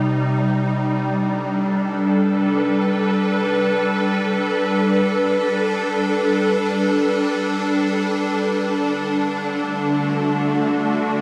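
A single evolving wavetable pad opens the recording, its detuned sine tones blooming in with a slow attack over a C minor chord. This is spacious, reflective ambient music in free time, tuned to A4 = 435 Hz and cut from a longer piece. The pad plays alone between C3 and B4, morphing as it sustains and lets each chord fade through a long release. Its sound is bright and up front, thickened by an ensemble chorus and its own built-in reverb. The harmony moves to G at 0.7 seconds and holds there until a shift to D at 8.7 seconds. A huge, wet ambient reverb with a 7.5-second decay surrounds it all in a dark, warm production.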